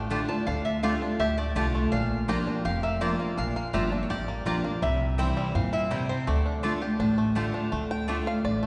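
Soaked in a wet concert-hall reverb with a muted top end, this haunting, lonesome bluegrass excerpt in D minor moves at a brisk 166 BPM, tuned slightly flat to A4 = 437 Hz. A twangy, percussive fingerpicked banjo and a nasal, metallic slide lap resonator guitar carry the melody, with the resonator dropping out at 7.5 s. Beneath them, an up-front picked steel-string acoustic guitar with fresh strings provides accompaniment, a thumpy pizzicato upright bass anchors the Dm, Bb and C changes, and a woody double-strung mandolin adds stabs from the background.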